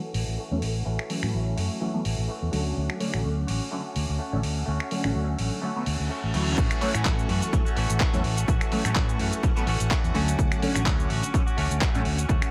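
Filtered disco house with a funky, joyful mood, cut from a longer piece, where a swirling, vintage string machine with ensemble chorus and phaser holds sustained chords in the background while a twangy, direct-recorded clean guitar riff and a detuned sawtooth polysynth comp, both pumping under sidechain and a low-pass filter, ride over a round, dark fingered electric bass. A gritty, sampler-style drum kit of hi-hat, shaker, handclaps, finger snaps and crash cymbal keeps the groove through a filter sweep, and a reverse cymbal at 5.8 seconds leads into the drop at 6.6 seconds, where a punchy, tape-warm electronic kick enters up front. The chords move between A6 and Dmaj7 in a dry, close-sounding mix.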